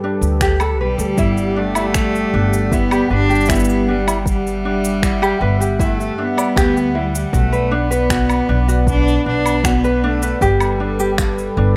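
A bowed cello carries the melody in this wistful, delicate folktronica excerpt, its earthy, nasal tone touched with light vibrato and tape echo as it enters at 0.8 seconds. Beneath it, a mellow fingerpicked ukulele spins light arpeggios through its own tape echo, while a smooth sawtooth analog pad with slow attack, detuning and chorus holds sustained chords from the very start. A woody pizzicato upright bass sits up front in the low register, anchoring the unhurried 78 BPM pulse in a straight 4/4. The percussion is electronic and produced: a deep, overdriven kick alongside an overdriven blend of cabasa, finger snaps and woodblock, both re-recorded in a large room for a grainy, roomy edge. Set in E minor, the harmony moves from Gadd9 to Em7/G, then to Bm before returning to Gadd9. The dry, rough home-demo mix keeps the sound intimate and close.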